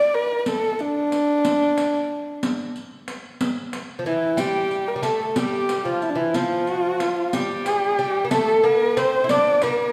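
Longing and hypnotic, this excerpt from a longer Persian modal ensemble piece moves in a straight 6/8 metre in avaz esfahan. A single bowed kamancheh carries the melody from the first moment, its dark, woody tone close and up front, shaped with vibrato and portamento. A riq enters at 0.5 seconds, sitting low in the mix, its dark jingles struck with soft hands and given a vintage, band-limited colour. At 4.0 seconds a fretless oud joins with a second line in a lower register, its plucked double strings sounding warm and acoustic beside the kamancheh. The ensemble is heard in a recital hall whose generous reverb lends a spacious, resonant air before the recording breaks off at 9.9 seconds.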